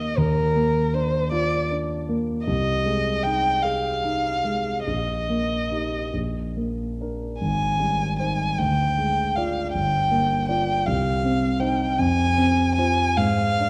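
Lyrical and serene, this fragment of a romantic classical duo moves in a slow, rubato 6/8 at 46-56 BPM (dotted quarters), tuned to A4 = 439 Hz. A single bowed violin sings the melody up front with expressive vibrato, portamento and a smooth top, while a concert grand piano, equally close, accompanies with a deep bass through harmonies such as Abmaj7, Ddim, Gm7 and Cm before settling on a rootless Bb7/Ab at 13.2 seconds. A wet recital-hall reverb and a dark, warm production wrap both instruments throughout the 13.7 seconds.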